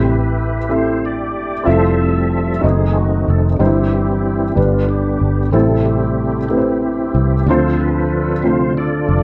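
A clear, up-front tonewheel organ leads this jubilant, uplifting gospel excerpt at 62 BPM in 6/8, its sustained chords shimmering through a fast rotary speaker with chorus vibrato and a touch of key click. Beneath it, a dark, woody upright piano with audible action noise and a slightly detuned character supplies accompaniment, while a round, foam-muted fingered electric bass with tube saturation sits up front over a progression moving from Am7 through F#dim7 and C/G to Dm7. Light reverb and the worn, warbly pitch drift of old cassette tape give the whole passage a lived-in feel.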